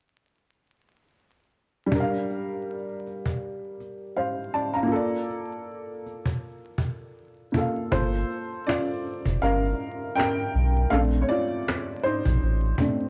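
Dreamy and nostalgic, this lo-fi hip hop excerpt, cut from a longer piece, rests on a swung groove where a dark, woody upright piano with audible action noise and a slightly detuned, cassette-worn tone shares the front with a snappy cajon played with soft hands. At 7.9 seconds a deep, round dub sub bass joins as the piano moves into a solo over Gm7 and Bbmaj7 chords. Light reverb, small room ambience and vinyl crackle give the band-limited sound an intimate, vintage haze.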